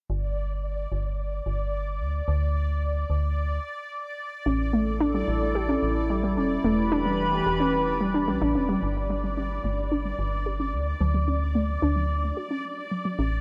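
IDM with a glitchy, intricate mood, this short excerpt from a longer piece moves in a straight four-beat pulse inside a huge ambient reverb. A metallic FM bass with a fast, decaying attack sits dark and up front throughout, carrying a filter sweep through its first 8.8 seconds. Above it, a bubbling texture of detuned sawtooth tone hops through random, resonant filter steps on a single bright high note, softened by chorus and shimmer reverb. At 4.5 seconds a hollow, flute-like pad enters with slow-attack sustained chords, airy and breathy under chorus and shimmer, and holds until 8.8 seconds. Also from 4.5 seconds, a warbly, dusty pluck spins lo-fi arpeggios through cassette-tape grit, chorus and delay, and takes over the filter sweep in the closing section as the harmony moves from Em back to G5 and on to D.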